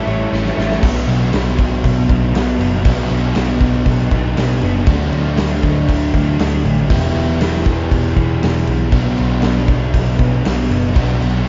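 Shoegaze-leaning dream pop rock in B minor at 119 BPM, this hazy, brooding excerpt opens with a brief flash of bright, twangy twelve-string arpeggios and a double-tracked cranked stack riff over an A7 chord, both gone by 0.8 s as a drum fill leads into a Bm–D–Em–Bm progression. Carrying on to the end, a crunchy overdriven guitar riff with reverse reverb sits up front while a dark fuzz guitar churns in the background, anchored by a round, foam-muted vintage bass and a huge arena kit with a punchy kick and natural big-room sound. The dreamy mix is soaked in lush hall reverb, its top end rolled off for a soft, veiled haze.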